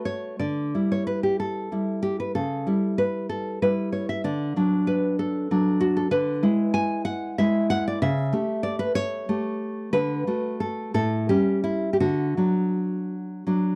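A fingerpicked nylon-string guitar plays alone and up front, its warm classical tone carrying audible finger squeaks through this sunny, nostalgic romantic piece in D major, tuned to A4 = 439 Hz. The 6/8 pulse moves freely in rubato at around 54-65 BPM in dotted quarters, with chords drifting from Em7/D through A7/C# and E7/D before settling on D at 12.0 seconds. The dry, close sound of a 1970s-style studio recording with a touch of small room reverb frames this short passage, cut from a longer piece.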